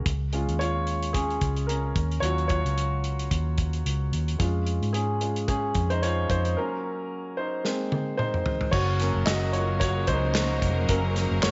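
This piano-driven pop excerpt opens with a clear, open baby grand piano and a dark, round, foam-muted electric bass, with a natural country drum kit entering almost at once. The mood is anthemic and warm, moving at 111 BPM in 4/4 with a light swing on the sixteenths. The piano stands up front with long sustain and carries a solo across the passage. The bass sits beside it with an amped, vintage tone, while the acoustic kit's tight kick, medium-tuned snare, hi-hat, handclaps, toms and crash give it a small-room feel. After a drum fill at 7.6 seconds, a bright, lush bowed string section arrives at 8.7 seconds with intense vibrato, holding sustained chords as the harmony moves from Abadd9 back to Gb. A moderate echo-chamber reverb surrounds the mix, and its top end is rolled off above 7.7 kHz.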